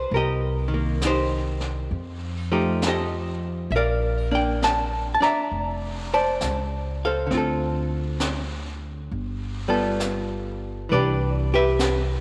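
Swung eighths at a slow 67 BPM in 4/4 carry this tender, late-night jazz ballad fragment, with a clean, picked hollow-body archtop guitar up front comping through chords such as Cm7, F9 and Bbmaj9#11 before settling on Cmaj9 near 10.9 seconds. A woody pizzicato upright bass sits close beneath it, while a brushed kit with a high-tuned snare, hi-hat and a rolled-off top stays further back from 0.1 seconds. A wet echo chamber reverb with a long 2.7-second tail wraps the sound in a soft, spacious glow.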